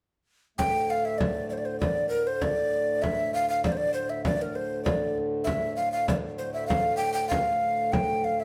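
Driving and ancient, this short fragment of a medieval dance in 2/4 has a breathy tenor recorder carrying the melody up front with a crisp, chiffy attack and vibrato, over a reedy, dark drone from a hand-pumped harmonium and a deep, up-front frame drum, the three playing together from 0.6 to 8.4 seconds as a live band in one room with wet stone-room reverb.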